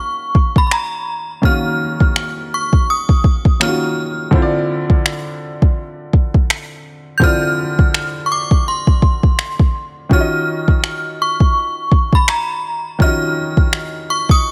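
Dry and close, with little reverb, this short cut from a longer contemporary R&B piece carries a longing, sensual mood at 83 BPM in 4/4, with a lilting 16th-note swing. A synth chime sings the melody high above everything, its FM tone inharmonic and ringing, with a fast attack and a long, decaying release colored by ensemble chorus, phaser and tape echo. Beneath it, a clear baby grand piano supplies natural, short-sustained accompaniment through the Ebm9 and Dm9 chords. The drum kit comes in at 0.3 seconds and sits up front: an electronic, produced blend of finger snaps and a soft, overdriven kick. Most of the passage, up to 10.1 seconds, plays as a break, before the harmony returns to Ebm9.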